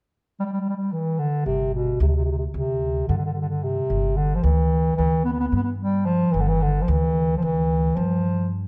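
Counted in a straight 9/8 at 221 BPM on the eighth note, this short cut from a longer Turkish makam ensemble piece carries a warm, festive mood in G makam hicaz, tuned to A4 = 441 Hz. A mellow bass clarinet enters at 0.4 s and carries the melody alone in the opening, playing in a classical style between B2 and B3. It sits up front in the mix yet has a distant, roomy quality. At 1.5 s an acoustic upright bass joins underneath with a woody, dark pizzicato line on steel strings, ranging from G1 to G2 until the close at 8.7 s. A moderate recital hall reverb surrounds the pair, and the overall production is dark and warm.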